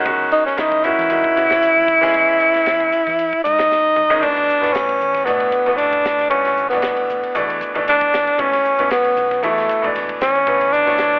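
A swung 4/4 groove at 115 BPM drives this soaring, funky electric jazz fusion excerpt, which moves from E major into A mixolydian at 4.2 s after a drum fill. Up front, a breathy tenor saxophone carries the melody with whispered vibrato and a slapback echo, while a bright baby grand piano provides accompaniment with audible action noise and short sustain, set over a crisp drum kit with a high-tuned snare and punchy kick and a dark, round fretless bass sitting in the background. The whole mix has a telephone-like filtered sound, with moderate large studio reverb blended with small room ambience.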